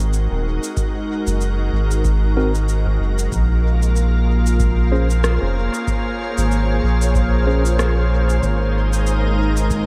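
A swung 16th-note groove at 94 BPM in 4/4 sets this hazy, spacious ambient dub piece in Bb minor. An overdriven electronic shaker and rim click, re-recorded in a large room and trailed by dub echo, sit low in the mix, and a deep analog kick joins in the background at 0.8 seconds. Up front, a round, soft sub bass with tube saturation holds the low end, while an organ-like additive pad fades in with calm, bright, detuned sustained chords, moving from Ab7 to Bbm7 and back, bathed in ensemble chorus and its own reverb. A clean tine electric piano with medium tremolo, played through a combo amp, adds very quiet stabs from 2.4 seconds. At 3.9 seconds a glassy texture of drifting overtones slowly enters behind it all, lending a shimmering haze to this passage cut from a longer piece, which sits in a light reverb.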